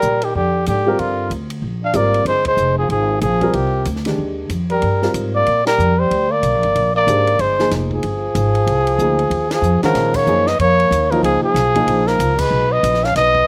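Modal jazz at a brisk 188 BPM in 4/4 with a swung eighth-note feel, this short passage from a longer piece has a searching, cool mood and settles into Bb phrygian from 10.0 seconds. A breathy, whispered trumpet carries the melody up front with vibrato and a soft attack, while a trombone in a cup mute plays a veiled, mellow second line beneath it, with scooped notes and a vintage character. An upright bass, plucked and woody with a thumpy steel-string tone, sits forward in the mix. A worn upright piano, slightly detuned with audible action noise and a slapback echo, enters at 0.9 seconds and comps until 12.2 seconds. A compact cocktail drum kit stays low in the mix, dry and natural with dark cymbals, a high-tuned snare and a tight kick, as the band hits shared accents through the passage. The harmony moves between Gm7 and Fm before shifting to Bbm7, and the recording has little reverb, with an outdoor setting that leaves the sound free of room ambience.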